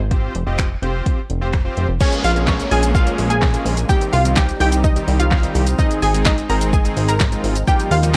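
Driving and confident, this dance-pop excerpt at 127 BPM in Bb dorian pumps a chorused, glossy synth bass and a fat, bold polysynth against an up-front deep house kit with deep kick, metallic hats and handclaps, adds a brief, crisp group handclap at 0.6 seconds, then drops at 2.0 seconds into a round, bright analog pluck melody with tape echo, an airy resonant pad in the background and a downlifter over Bbm7, Cm and Ab, all coloured by worn, warbly cassette-tape drift and little reverb.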